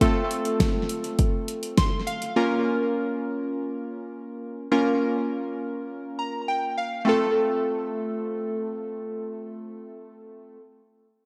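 A nostalgic, bright synth-pop fragment in F major at 102 BPM opens with round, detuned analog keys, thick with chorus and tape echo, over an up-front deep house kit of deep kick, fat snare and hi-hat that drops out at 2.4 seconds. The keys carry on alone through a move from F to B-flat minor and back to F, adding fills around 5.9 seconds, their wave-folded tone and filter sweep heard in a plate-reverb, echo-heavy mix until the piece cuts off at 10.6 seconds.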